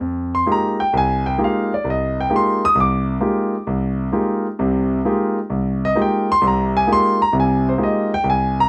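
Intense and spiritual, this short jazz fragment of about 8.7 seconds features a solo concert grand piano with a deep bass and natural, up-front tone, ranging from C2 up to Eb6 in a swung 4/4 over a single Fm11 harmony, captured with close, detailed microphones and light reverb.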